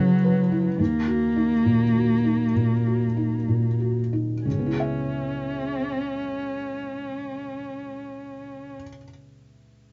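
A single dark cello, bowed sul tasto with vibrato and placed close and up front, carries a woody second line in this reflective, longing neoclassical piece for piano and strings. Alongside it, a felt-muted upright piano plays soft, mellow accompaniment across a broad register, its thick felt and audible action noise giving an intimate, vintage character. The rubato feel in 4/4 slows through the opening phrases, which move from F#7sus4/C# to D#m before a new section settles on C#m7 at 4.5 seconds. The cello bows its last note at 8.7 seconds, and the piano rings on alone until 9.9 seconds. Light reverb surrounds the pair, and the rolled-off top end keeps the sound gentle and hushed.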